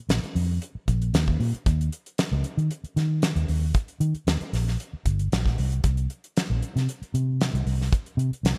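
Electric jazz fusion with an intense, funky edge, this short cut from a longer piece moves in a straight 4/4 feel. A vintage muted fingered electric bass sits up front from 0.1 seconds, its dark, round, foam-muted tone amped and punchy as it ranges from G1 to Eb3. Alongside it, a damped 70s drum kit of hi-hat, kick and snare plays the whole way through, with a fat snare, a tight kick, a polished, airy character and a rolled-off top. The kit carries gated reverb, while the recording overall stays close and dry with little ambience. A bright 1980s-style digital production frames the duo, keeping both parts forward and immediate until the cut ends at 8.6 seconds.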